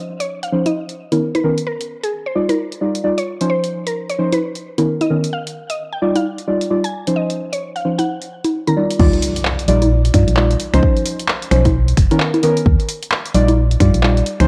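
A bouncy, swung two-step shuffle from a tape-saturated analog drum machine with congas, snaps, handclaps, hi-hat and crash carries this soulful UK garage excerpt, where deep, warbling chorused chord stabs cycle through lush major-ninth harmony beneath a woody, detuned mallet-like pluck melody until 8.8 seconds, before a drop at 9.0 seconds brings in a hollow, dark organ-like FM bass, an overdriven punchy kick and a faint electronic impact, all heard with light reverb and lo-fi cassette character.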